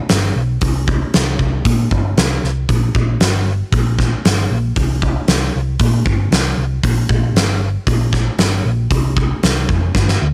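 Confident and swaggering, this classic rock passage, cut from a longer piece, pairs a dark, round hollow-body short-scale electric bass, picked with a punchy amped tone, with a gated 80s drum kit of hi-hat, kick and snare. The drums sit up front with a fat snare, a tight kick and an airy gated-room sound, all in a light reverb. The groove runs straight in 4/4 and ends with a drum fill at 10.0 seconds.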